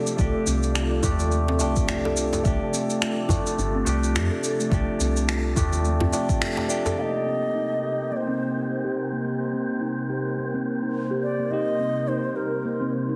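A pure, up-front bass bansuri with vibrato and tape echo carries the melody from 7.0 s in this meditative, mystical organic downtempo piece in C dorian at 106 BPM with a swung 16th feel, floating over a barky tine electric piano with phaser, a warbling lo-fi pad, a breathy wind-like noise layer and ringing steel tongue drum arpeggios under a filter sweep, while a woody FM bass, a deep electronic kick, tape-warm shaker and finger snaps and a dry djembe in the background fill the opening until the kick stops with a band accent at 6.4 s, all in a lush hall reverb with a heavily compressed radio sound.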